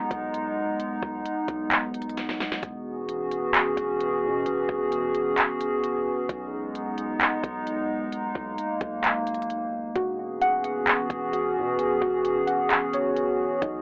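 Dreamy and floating, this short cut from a longer atmospheric cloud-rap track moves at 131 BPM in a half-time feel, set in E lydian. A warbly, nostalgic pad sits up front with slow-attack sustained chords, its lo-fi tone thickened by chorus, built-in reverb and sidechain pumping, moving between B6 and E69 harmonies. Beneath it, a deep, sine-like 808-style bass holds long decaying notes in the background. A smooth R&B kit with a soft kick, fat snare, handclaps and silky hi-hats carries the groove, breaking into a brief drum fill at 2.2 seconds. At 10.0 seconds, muted, felt-like synth keys enter with intimate, dark arpeggios colored by chorus, phaser and analog delay. The whole has a dry, gritty hardware character with light reverb and a telephone-filtered quality.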